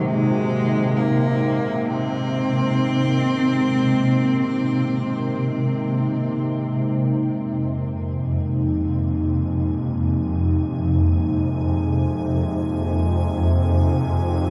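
Dark ambient drone in free time and F phrygian, desolate and cavernous, heard as a portion of a longer piece set in a wet cathedral reverb with a long 5.3-second decay. A swarming, tense drone sits up front across the low register, its detuned, wave-folded, granular tone evolving under a deep, moody pad of sustained chords treated with chorus. A bright, biting cello carries the melody with light vibrato for the first 6.4 seconds, intense yet distant within the diffuse ambient delay. A grand piano plays arpeggios throughout, barely audible beneath the haze. The harmony moves from Ab to Fm at 7.3 seconds, where the ambient pad fades in, and from 8.2 seconds an icy, crystalline glass pad adds an airy, ring-modulated shimmer high above. The overall production is dark and warm.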